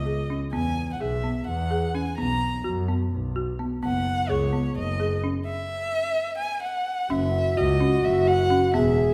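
This is contemporary chamber music in 7/8, a restless, shimmering short excerpt moving at 256 BPM in eighths with a straight feel. A bowed violin carries the melody from the start, played close and expressively by one player with vibrato, a soft attack and portamento. Beneath it, a single bowed double bass holds the bass line with a clear, intense tone, light vibrato and a smooth top, sitting up front alongside the violin. A folk marimba struck with medium hard mallets enters at 0.1 seconds with arpeggios, its hardwood bars sounding woody, dry, rustic and dark. At 7.1 seconds a close-miked French horn joins with a second line in classical solo style, stepping forward as the loudest voice in the closing passage. The harmony moves through suspended, major and open chords, and the whole ensemble sits in a wet recital hall reverb.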